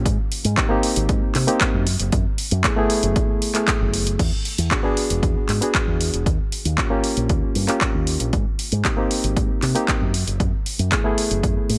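A reedy, clean electric piano with tape echo and an up-front fingered bass with envelope filter and sidechain pumping open this dry, groovy and sunny nu-disco excerpt at 116 BPM, joined at 0.1 seconds by a punchy, tape-warm electronic kick and a house kit of crash cymbal, handclaps and warm hi-hats, moving through G#maj7 and F#m11 in the opening drop before the second section turns to E7 and D#7 at 4.2 seconds and then returns to the opening chords.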